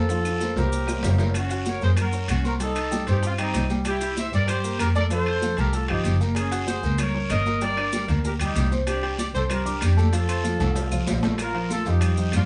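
Recorded live in one room with moderate studio reverb and a soft, rolled-off top end, this joyful, danceable salsa clip is cut from a longer piece. An up-front, tight horn section carries a mellow, roomy melody over a dark, intimate baby grand piano with audible action noise, while a bowed double bass sits up front with a woody, vibrato-laden tone. Congas with thick, high-tuned skins, quiet low-tuned bongos, ringing metal-shell timbales, woody claves, a raspy guiro and grainy maracas fill out the percussion, with drum fills at 0.1 and 10.6 seconds.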